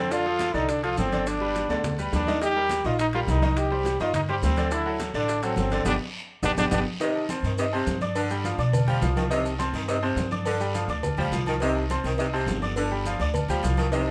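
Salsa at a driving, passionate 209 BPM, this excerpt opens with a brilliant, forceful trombone melody over bright grand piano with audible action noise, woody pizzicato upright bass, and a bed of congas, bongos and cowbell, timbales and agogo bells, raspy guiro and grainy maracas; drum fills and a band accent lead at 7.0 seconds into C minor, where the trombone has stopped and a close-miked saxophone section takes up a second line.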